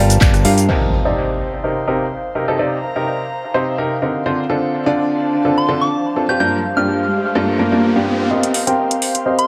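Piano house at 126 BPM in C dorian, soulful and energetic, built on a clear, worn baby grand riff with audible action noise, pumping and filter-swept through dub echo over an airy, breathy chorused pad, with a bright, punchy fingered bass, a house kit of metallic hats, claps, rim clicks, shaker and crash, and a very quiet tambourine all dropping out by 0.8 seconds. The piano and pad then carry on alongside an electronic impact and riser until a soft, mellow FM bell enters at 5.6 seconds and the filtered drums return at 8.4 seconds, all washed in wet spring reverb and heavy echo across Gm7, Cm7 and Dm7 chords.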